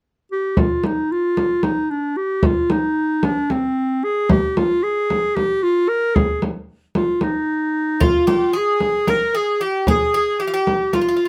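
A clear, close-miked clarinet opens this soulful, longing Turkish makam excerpt in 7/8, carrying a classical-style solo melody up front over a deep, saturated frame drum struck with soft hands, before a bright, metallic Greek bouzouki with double strings enters at 8.0 s to add a picked second line in a lightly reverberant room.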